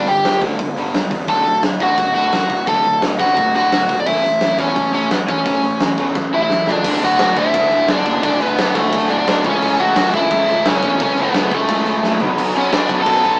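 A straight 4/4 punk rock beat drives this rowdy, rebellious cut from a longer piece at 173 BPM in D major, with a dark, smooth big rock drum kit up front, its punchy kick and medium-tuned snare joined by hi-hat, crash cymbal and toms, and fills at 6.2 and 12.0 seconds. A warm, overdriven semi-hollow guitar carries the melody up front, while a bright overdriven semi-hollow guitar riff, a very quiet, sludgy distorted guitar riff and a growly fuzz bass sit in the background, moving through G5, D, A and, after the new section at 6.9 seconds, D, A/C# and B5. The rough rehearsal-room recording has a small-speaker sound and moderate studio reverb.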